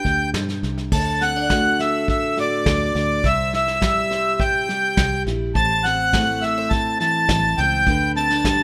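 Hopeful and gentle, this short cut from a longer acoustic folk piece moves at a straight 104 BPM in 4/4, with a reedy accordion carrying the melody up front over a full-bodied fingerpicked steel-string guitar. A round, foam-muted electric bass and a vintage brush kit with dark cymbals, a punchy kick and a medium-tuned snare fill out the small band as the chords pass from G through D, C and Am to G/D. Light reverb and small room ambience give it the rough feel of a home demo.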